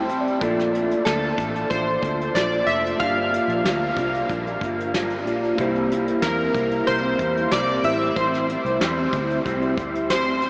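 Hazy and dreamy, this short excerpt of bedroom-flavored indie pop drifts along at an unhurried, straight four-beat pulse, with a chord cycle moving from Bbmaj7 through Gm7 and C7 to Am7. A mellow tine electric piano opens with a brief fill and then holds the harmony with a clean, direct tone colored by cassette tape, while an electric guitar through a small old amp adds a dark, slightly broken-up layer, its ensemble chorus and warbly pitch drift giving it a lo-fi wobble. Underneath, a vintage muted picked bass sits round and punchy, and a soft brush drum kit enters at 0.1 seconds with a tight kick, medium-tuned snare and hi-hat in a natural studio room. At 1.1 seconds the chorused retro synth keys arrive up front with the melody, a glossy, bright, detuned pulse-and-sawtooth voice with filter sweeps, fast-attack decaying notes and a diffuse ambient delay. The whole mix is soaked in a huge ambient reverb and carries a small speaker sound, lending it a faded, dreamlike glow.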